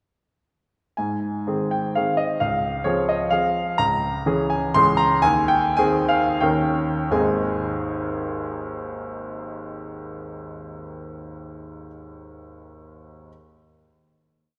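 Bathed in a wet concert-hall reverb, a clear, present grand piano sits up front with long sustain in this brief romantic classical dance in triple time, rustic and proud in mood. The solo piano carries a single-line melody in dotted rhythms over bass and chords that stress the second or third beat, with a rubato phrase that slows from 3.1 to 7.1 seconds. The complete piece closes on a final chord lasting until 11.1 seconds.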